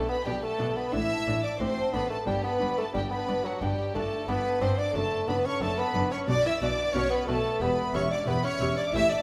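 A mellow, roomy solo bassoon carries the melody up front from the start of this festive, brilliant baroque-style concerto movement, cut from a longer piece. An intimate chamber violin section plays a second line beside it, while a bright, delicate fingerpicked lute sits in the background. From 0.1 s a lush symphonic violin section sings a high, expressive melody with vibrato, and by 0.3 s chamber violas, cellos with touches of portamento and a rich, even double bass section fill in the accompaniment and bass, all set in a wet scoring-stage reverb as the harmony moves from G/B through D/A and D/F# to Em.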